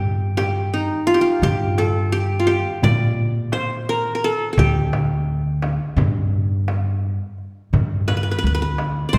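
A bright-edged qanun, played with fingerpicks and sitting up front, carries the melody in this festive Turkish makam ensemble excerpt in G makam ussak, moving in a 9/8 metre at 171 BPM in eighths. A woody, growly pizzicato upright bass holds the low end close beside it, while a small, high clay-shell darbuka and a frame drum join at 0.4 seconds from further back. A recital hall reverb places the group at a distance in a resonant room, and a new section arrives at 7.7 seconds before the cut at 9.2 seconds.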